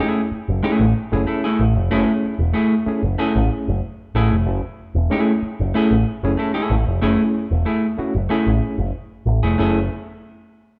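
Funk at 94 BPM in F# minor, driving and hypnotic, sitting on an F#m9 chord in this short cut from a longer piece. A dark, clean semi-hollow electric guitar plays accompaniment with spring reverb while an overdriven reed electric piano adds gritty stabs with fast tremolo through a combo amp, and a round picked electric bass with an envelope filter enters at 0.3 s, up front and low. The band plays live in one room, giving a moderate large-studio ambience.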